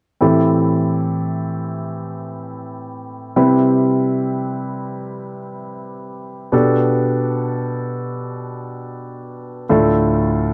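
A warm grand piano opens the recording at 0.2 seconds, playing in free time as a tender, hopeful pop accompaniment. Its tone is present and polished, sitting up front in a moderate studio reverb that lends the sound a gentle sense of space. The harmony moves from Am7 to Cmaj7 at 3.4 seconds, then to Gadd9/B, before settling on Dm near the close. The piano ranges from D2 up to B4, keeping its voicings in the low and middle registers. Cut from a longer piece, the passage ends at 10.5 seconds.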